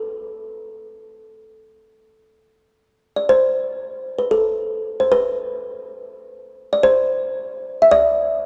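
In free time, a lone kalimba with a woody, vintage, band-limited tone sits up front in this short, mournful and solemn Caucasian folk fragment, its plucked notes hanging in a moderate church reverb within a dark production.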